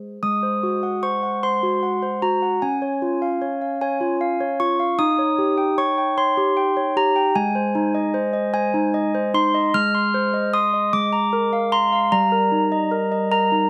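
Closely miked and nearly dry, this short cut from a classical lullaby puts solo handbells up front, their clear, ringing, mellow tone softened by gentle clappers, as they move at a dreamy, innocent 50 BPM in a straight 6/8 through Ab7, Db, Eb7 and Ab before shifting from Ab major to Eb major at 9.7 seconds, all tuned slightly low to A4 = 438 Hz.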